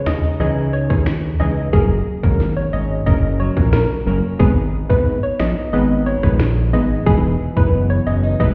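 Heard muffled through a wall in a stone room with light reverb and nothing above 7.5 kHz, this excerpt of sultry, tough dancehall moves at 90 BPM in G# minor over chords of C#madd9, F#, G#m and Emaj7. A tight electronic drum kit of kick, sharp snare, rim click and finger snaps sits up front beside a fat, detuned sawtooth bass with an evolving filter sweep. A hollow, bouncy square-wave pluck carries the melody through chorus and tape echo, punchy chorused brass stabs join at 0.4 seconds, and a fingerpicked nylon-string guitar plays full-bodied arpeggios in the background from the opening moment.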